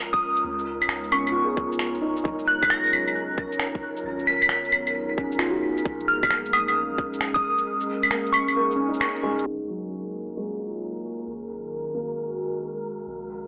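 Ghostly and rainy, this future garage excerpt sets a warbling, detuned tape-like pad, a soft round 808-style bass in the background and a breathy, wind-like noise texture under a glassy FM synth bell melody with tape echo, while a felt-muted upright piano with audible action noise enters at 1.1 s, a tight electronic kick drops out at 7.4 s, and up-front shaker, claves and finger snaps carry the swung groove into a filter sweep from 9.5 s, all through gritty hardware, vinyl crackle, an AM-radio tone and a concert hall reverb.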